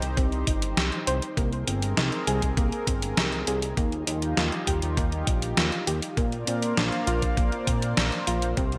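An up-front, detuned 8-bit digital drum machine with hi-hat, a medium-tuned snare and gated reverb drives this moody synthwave excerpt at 100 BPM, joined from 0.2 seconds by a thumpy, tape-tinged electronic kick, while a glossy chorused synth bass and a shimmering chorused pulse-width pad pump under sidechain over Cm, Abadd9, Ebadd9 and Bbadd9, a soft round pluck spins delayed, chorused arpeggios through shimmer reverb, and the whole sits in a moderate plate reverb with bright 1980s-style digital production.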